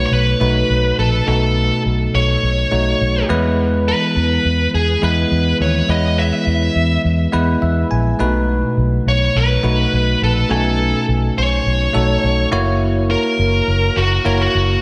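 1980s-style pop with a nostalgic, uplifting mood and a light swing, cut from a longer piece, where a smooth overdriven lead guitar carries the melody with delay, sitting up front beside a bright, bell-like tine electric piano that adds a fill at 7.3 seconds. Underneath, a vintage muted fingered electric bass gives a dark, round, punchy foundation as the harmony moves through B7, E and F#7. The whole mix is dreamy and soaked in a lush hall reverb.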